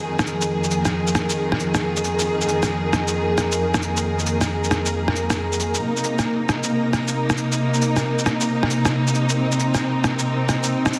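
A lush, bowed string section opens this ghostly, nocturnal future garage excerpt, holding sustained chords up front with a close, focused vibrato as the harmony moves from Fm7 to Cm7 at 5.8 seconds. Almost at once a reversed, detuned texture drifts in behind it, a dreamy, granular haze with a soft attack, long release and a bright edge bathed in its own reverb. From 0.2 seconds a swung groove of rim click, shaker and cabasa sits forward in the mix, its sampler-style hits compressed, muffled and tape-tinged, with soft clipping on the snare and a touch of studio reverb. A vast ambient reverb hangs over the whole scene, giving the strings and texture a cavernous, late-night depth. The master is dense and heavily limited, with vinyl crackle running beneath the music.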